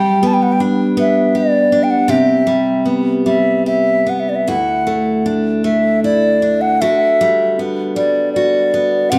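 A mellow, hollow flute and a bright, full-bodied picked steel-string acoustic guitar begin together in this tender, wistful Celtic slow air, cut from a longer piece and moving at 77 BPM in 3/4 with uneven, rubato beats. The airy flute carries the melody with a straight, tongued tone up front, while the guitar accompanies with audible finger squeak, its chords moving from G through Cmaj7 and Dsus2 to Gmaj7/D. Both sit in a moderate recital hall reverb, and both play through to 9.2 seconds.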